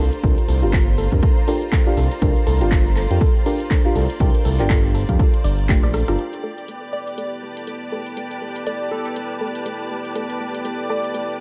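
A soft, round pluck opens this smooth, late-night deep house excerpt at 121 BPM, its chorused, tape-echoed arpeggios pumping in the background over a mellow synth bass, rich bowed studio strings and shimmering vintage string-machine violins, while a swung kit of dark hats, handclaps and rim clicks joins with a dry, punchy electronic kick up front, both carrying 12-bit sampler grit. A deep, nasal chord stab under a filter sweep floats over C9sus4 until a drum fill at 5.8 seconds, after which the harmony moves to A9sus4 and a moody, detuned analog pad swells in alongside a crystalline wavetable pluck melody. The whole piece sits in light digital reverb with a cassette-tape character.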